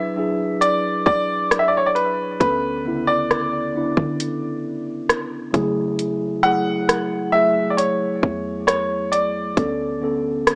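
Contemporary R&B at a slow 67 BPM in B dorian, longing and moody, this short cut from a longer piece opens on a mellow tine electric piano carrying the chords through E9, Bm9/D and F#m9/C#, while a clear, short-sustained grand piano sings the melody up front with cassette tape coloring and an analog delay. A trap drum kit enters at 0.6 seconds with a hard-clipped kick, metallic hi-hats and rim clicks, and a soft, round 808-style bass sits deep in the background. Light digital ambience and a lo-fi home-cassette, small-speaker character give the track an intimate, hazy feel.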